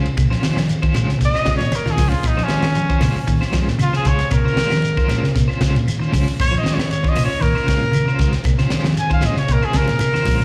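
Driving and funky, this afrobeat excerpt at 116 BPM sits on a Bbm9 chord in Bb minor, where a round, dark hollow-body bass, slightly broken-up guitar stabs with tremolo and slapback echo, and a tight, up-front funk kit with a high-tuned snare and drum fills around 1.6 and 9.7 seconds are joined by grainy shekere, bright soft-handed congas, faint woody claves, and scooped clean guitar arpeggios, before a clear, distant trumpet with light vibrato and slapback echo enters at 1.3 seconds to take the solo, all heard as a live gig through a venue's PA with recital hall reverb.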